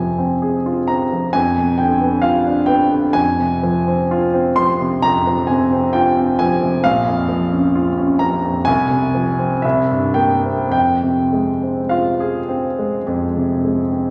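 Classical romantic nocturne for solo piano in F minor, this mournful, yearning excerpt drifts at 50-69 BPM in 4/4 with free rubato, its intimate, up-front concert grand, with deep bass, short sustain and audible action noise, moving from Fm through Fdim7, Bbm and C7 back to Fm at 10.7 seconds inside a wet concert hall reverb that lingers for 2.1 seconds.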